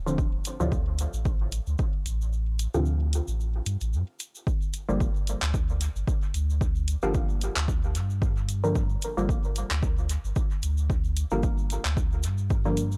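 Muted, detuned sawtooth chord stabs sit up front in this deep, cavernous dub techno excerpt, their filter-plucked attack and short decay softened by chorus and phaser, then trailed by dub echo and pumped by sidechain. Under them, a pure sine sub bass holds a clean, smooth, dark low end with a fast attack and sustained notes, also pumping from sidechain. A punchy, layered electronic kick drives the swung 4/4 groove but drops out between 2.3 and 4.5 seconds. A produced deep house kit adds handclaps and hi-hat, its hits thrown into dub echo, while a grainy, bright acoustic tube shaker sits low in a small room. The harmony moves from Dm7 to Gm7 at 4.5 seconds, and the dry, gritty hardware sound carries a cassette tape character throughout this fragment of a longer piece.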